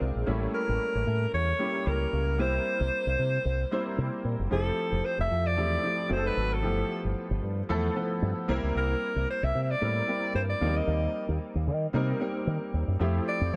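Set in a small room with light reverb, this glossy, urban slice of polished 1980s jazz-funk pop moves at 113 BPM in F major with a lightly swung sixteenth-note feel, as a punchy fingered electric bass with an envelope filter and a smooth, vintage grand piano with ensemble chorus play throughout while a breathy alto saxophone with light vibrato enters at 0.5 seconds to carry the melody over chords such as A7b9, G13 and Fmaj9.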